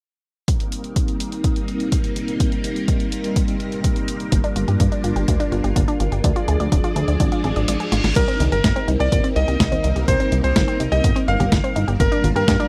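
A bright, cutting electric grand piano with tape echo carries the melody from 8.2 seconds in this nostalgic, danceable italo disco excerpt at 125 BPM in C minor. It rides over lush phased string-machine chords, a punchy analog kick, a sampler-style drum machine with congas, hi-hat, snare and crash, a glossy, nasal chorused synth bass, and round analog pluck arpeggios entering at 4.3 seconds. A reverse cymbal and drum fill lead into the change at 8.2 seconds, all in a dry, close 1970s-style studio sound.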